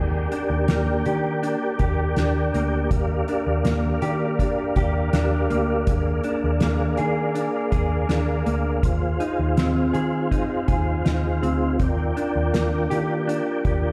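Dream pop at 81 BPM in 4/4 with a straight feel, this short cut from a longer piece drifts in a floating, dreamy mood over Eb major chords that move from Ebmaj7 through Gm7/Eb, Bb7/Eb and Fm7/Eb before returning to Ebmaj7, all resting on an Eb in the bass. A soft, flute-like tonewheel organ sits up front with sustained chords, colored by chorus vibrato and a fast rotary speaker. Beneath it, a mellow, clean electric guitar plays fingered arpeggios, its dark tone thickened by analog chorus and trailed by delay. A vintage muted picked bass, round, amped and foam-muted, holds the low end up front, while a soft-mallet drum kit enters at 0.3 seconds with hi-hat, a fat snare and a punchy kick in a smooth studio room sound. The whole mix carries light reverb and small room ambience, heard as if played on a big sound system in a bare stone room.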